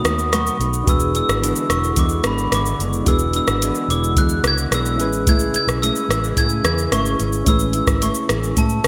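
Laid-back and sunny, this short indie and bedroom pop excerpt at 109 BPM in A major sets a soft-mallet glockenspiel melody, bell-like and airy under lush chorus and delay, over fingerpicked steel-string acoustic guitar with subtle chorus and warbly pitch drift, a barky reed electric piano with fast tremolo and cassette tape colour in the background, a hollow, flute-like pad with slow attack, a round, foam-muted vintage electric bass and an up-front analog rhythm box of deep kick, metallic hi-hat, rim click and shaker with gated reverb, moving from B7 and E7 to Amaj7 at 5.0 seconds in a bright 1980s-style digital production set in a moderate, lush hall.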